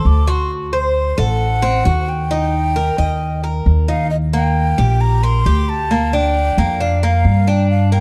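The recording has a dark, warm production with light reverb, in a short cut from a longer Cuban son and guajira piece that feels nostalgic and sultry at 133 BPM in a straight 4/4. A breathy, mellow silver concert flute carries the melody between C5 and D6, close-miked with a straight tone and tongued notes, its playing unsteady. Beneath it, a bright Cuban tres picks metallic arpeggios on its double strings, some of them octave-doubled. An upright bass joins at 0.1 seconds, its woody pizzicato on steel strings sitting up front in the mix. The harmony moves from Adim to Eb, then shifts at 4.1 seconds into a second section built on Eb6 and Bb/D.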